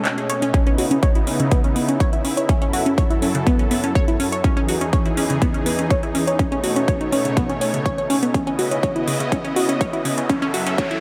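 A punchy, up-front electronic kick drum enters at 0.5 s and drives this dreamy progressive house fragment at 123 BPM in straight 4/4, set in C# minor with studio reverb around it. Over it, a detuned sawtooth unison pluck plays fast-attack arpeggios with short decay, a noise layer and a moving notch, pumping against the kick and trailing dub echo. Beneath, a lush supersaw pad sustains soft-edged chords with a long release, also pumping, moving through C#m9, F#m7, Emaj7 and B9. A layered big-room drum kit adds handclaps and metallic, high-passed hats, while a dark, gritty ride cymbal is barely audible at the very start and an electronic swell and riser sit in the background. The whole passage is a build-up with a filter sweep, capped by a drum fill from 8.3 s, all in a light digital ambience.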